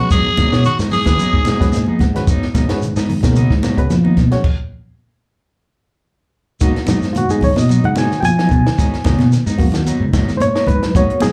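A lightly swung 16th-note afrobeat groove at 111 BPM in G# dorian rides on a punchy, up-front cocktail drum kit with dark cymbals and a high-tuned snare, a round fingered bass, a grainy shekere and bright, compressed congas tucked in the background. For the first 2.0 seconds a raspy, gritty tenor saxophone states the melody with a quieter, edgy second sax line beneath, both touched with slapback echo, while a barky, overdriven reed electric piano with fast tremolo, soft dark guitar arpeggios and twangy, slightly broken-up guitar stabs sit on a G#m7 chord. After a stop at 4.4 s, the electric piano takes a solo from 6.6 s, and the defiant, hypnotic fragment is heard as a live gig through a club PA with light reverb and room ambience.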